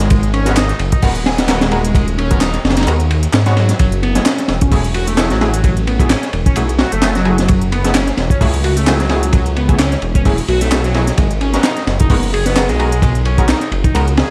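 A swung, crunchy breakbeat kit with a punchy kick and high-tuned snare drives this energetic, raw breaks excerpt, layered with a crisp-hatted garage kit of handclaps and hi-hat, a deep, rumbling detuned saw bass up front, a screaming, guitar-like overdriven synth lead riff colored by phaser, tube saturation and tape echo, and bold, nasal orchestra-hit-like stabs entering at 0.5 seconds, all set in a dry, dark production dusted with vinyl crackle.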